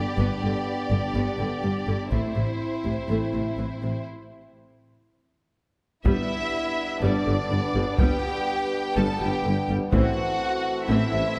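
This cinematic, epic orchestral cue opens at 124 BPM in a straight 4/4 with the full string body and horns already sounding. A lush violin section carries a focused, vibrato-rich melody over a smooth second violin line. Violas and cellos sit close in the background with soft attacks, and the violas add touches of portamento. A rich, bowed double bass section anchors the low end beside the cellos, while a mellow, distant French horn section holds sustained chords over a G to A minor harmony. A taiko ensemble struck with hard sticks, close and dry, enters briefly at 2.1 seconds during a relentless build-up that pauses for a break at 4.1 seconds. At 6.1 seconds the taiko returns, joined by a tight, vintage-toned trombone section holding chords and a roomy solo tuba reinforcing the bass, lifting the heroic mood in a moderate scoring-stage reverb before this cut from a longer piece ends.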